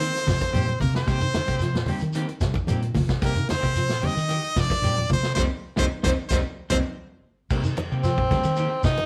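A straight 4/4 groove at 112 BPM drives this funky, defiant afrobeat passage in C minor. It rests on a vintage drum kit with a punchy kick, dark cymbals and a rolled-off top, a round, dark fingered electric bass, a grainy, very quiet shekere, and low-tuned congas struck with hard hands in the background. Over a Cm7 chord, a brilliant, forceful trumpet carries the melody up front with vibrato, shadowed further back by a tenor saxophone playing a second line with scooped notes. A twangy guitar at the edge of break-up plays arpeggios through harmonic tremolo and slapback echo, while a clean, picked electric guitar adds stabs. A drum fill and a band accent land between 5.4 s and 7.5 s, after which a breathy, whispered tenor saxophone enters at 8.0 s for an intimate solo. The band plays live in one room with moderate studio reverb.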